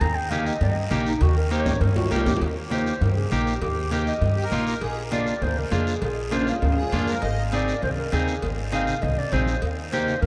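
A dark, distant clarinet leads this festive, joyful cumbia at 200 BPM in Eb major, backed from the start by woody, thumpy pizzicato upright bass, low-tuned congas, ringing cowbell and timbales and a raspy guiro, with a bright, clean picked electric guitar up front joining at 0.3 seconds. A drum fill closes the opening clarinet solo. A sweet, reedy accordion with light tremolo tuning adds a second line in the background from 4.4 to 7.4 seconds, over chords moving from Eb to Bb7 and Ab, all set in a vast, echoing space.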